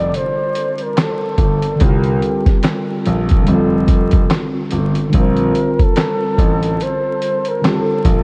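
A swung 72 BPM groove in 4/4 from a muffled, sampler-style drum kit, with a thumpy kick, fat snare, hi-hat and handclaps, enters at 0.1 s and grounds this reflective, melancholic lo-fi hip hop excerpt. A grand piano holds the low bass register with long sustain, while warbling synth keys, colored by chorus and cassette tape, carry chords from Gsus2 through C5 and F69 to Bbmaj9. Above them a breathy, close-miked flugelhorn plays an intimate jazz-style melody with vibrato and scooped notes, softened by a low-pass filter and tape echo, in a dreamy mix soaked in huge ambient reverb and vinyl crackle.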